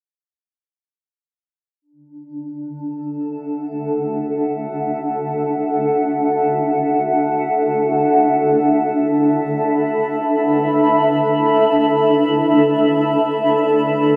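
A wet scoring-stage reverb surrounds this short, peaceful, luminous ambient passage in D major, drifting in free time as a fragment of a longer piece. A single granular cloud pad, dark, blurred and wave-folded, sits up front with its own built-in reverb, entering at 2.3 s with a slow attack and holding sustained chords between D4 and B5. The harmony rests on Dadd9 before shifting to Asus24/D at 8.3 s, and the pad's long release carries the evolving haze through to 14.2 s.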